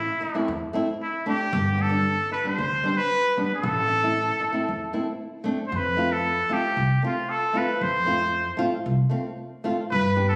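Soulful and bittersweet, this short klezmer excerpt moves at 114 BPM in a straight 4/4, cut from a longer piece. A cornet with a straight mute carries the melody up front, its nasal, muted tone brightened by a brilliant edge, a light vibrato, a soft attack and a smooth top in a jazz-inflected solo voice. Beneath it, a woody, pizzicato upright bass with steel strings anchors the low end. A dark, fingerpicked flamenco guitar, also up front, joins at 0.2 seconds to supply the accompaniment. The harmony moves from A minor to G and back before reaching F as the second section begins at 5.7 seconds. A recital-hall reverb lends the room a lingering wash, while the phone-captured sound carries added studio reverb and compression.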